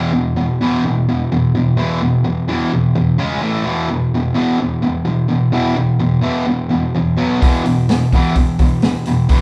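A bright, double-tracked fuzz guitar picks a swaggering riff from E2 to C#4 over E5, C#5, A5 and B5 power chords in this raw garage rock excerpt at 128 BPM in straight 4/4, tuned to A4 = 439 Hz, with a vintage drum kit of punchy kick, medium-tuned snare and hi-hat joining at 7.4 seconds, the band playing live in one room with a wet large-studio reverb, recorded to cassette tape.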